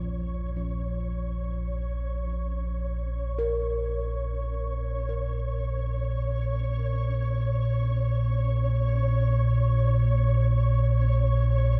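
This dark, unsettling ambient drone excerpt in Bb minor, tuned to A4 = 439 Hz, opens at once with an ominous, rumbling synth drone up front, detuned and slow to bloom, while a filter sweep shifts its tone. A flickering, grainy granular texture fades in high above, and gamelan-type bossed gongs with a metallic, bronze, beating ring play delayed arpeggios in free time until 10.2 seconds. A huge reverb with an 8.5-second tail wraps the whole unsettling haze.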